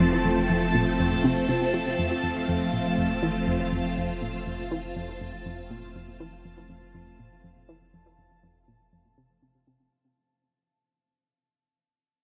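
A swirling, warbling vintage string machine carries this cosmic fragment of sequencer-driven space music, holding bright sustained chords up front through ensemble chorus and phaser. Beneath it, a round, nasal analog pluck repeats a riff in the low register, its fast attack and short decay smeared by chorus and tape echo. A deep sine sub bass sits quietly at the bottom, steady and sustained. High above, a resonant texture bubbles with random filter steps, rising in on a slow attack and trailing off through chorus and its own reverb. The music is bathed in a huge ambient reverb with a 7.0-second tail that lends an expansive, floating sense of space, while a fade-out runs across the full 9.9 seconds.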